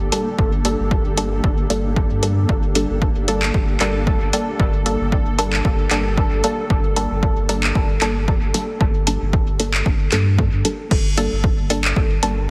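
A punchy, overdriven electronic kick drum sits up front in this hypnotic, deep dub techno excerpt, pulsing at 114 BPM in 4/4 with a 16th-note swing in G minor, entering at 0.4 seconds. Beside it, a soft vintage rhythm box adds crash cymbal, handclaps and metallic hi-hats, roughened by overdrive and trailed by dub echo. A muted, detuned filtered chord stab with a fast pluck and short decay carries the harmony around a Gmadd9 chord, its tone shaded by chorus, phaser, 12-bit sampler grit, dub echo and sidechain pumping. Underneath, a round sine sub bass holds the low end, also shaped by sidechain pumping, while a cloudy granular pad drifts in the background with slow attack, long release and its own reverb until 10.9 seconds. The mix has light digital ambience and a heavily compressed, radio-like sound.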